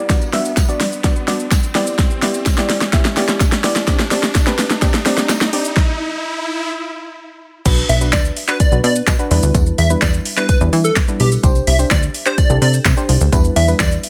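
Dance-pop with an energetic, bittersweet mood: a background riser and a deep house kit with a deep kick, fat snare and metallic hats build over a soft, round, chorused pluck and a very quiet, jingly tambourine, then after a stop the drop at 7.7 seconds brings in a punchy, funky analog bass with sidechain pumping and a bright, catchy unison lead with delay, all in light reverb.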